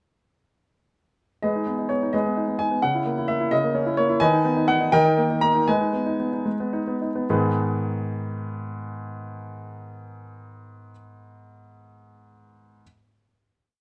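A warm baby grand piano plays alone from 1.4 to 12.8 seconds, carrying a tune over broken-chord bass in this brief, dramatic classical-period sonatina in G# minor. The mood is serious, with a straight 6/8 pulse at roughly 71-88 BPM in dotted quarters that slows from 3.5 seconds as the harmony moves from G#m through A#dim/C# and D# back home, arriving at a held final chord at 7.3 seconds. The natural, up-front tone sits in light reverb, tuned to A4 = 445 Hz.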